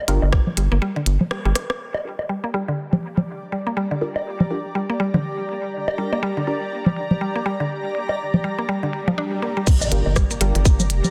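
Cool and hypnotic, this minimal techno excerpt in G minor moves at 122 BPM with a swung 16th feel, built on a clicky, tape-toned drum kit and overdriven woodblock and congas, while a tight electronic kick and a rubbery, nasal square bass appear briefly at the start, the kick returning at the drop at 9.7 seconds and the bass just after. A woody, bright mallet-like synth pluck carries the riff through phaser and dub echo, over muted, dark dub chord stabs that are filter-swept with the riff between 1.8 and 9.7 seconds. From 2.5 seconds a bubbling stepped-filter texture and a blurred granular cloud pad breathe with sidechain pumping, and a background swell and impact mark the drop on a dense, heavily limited master.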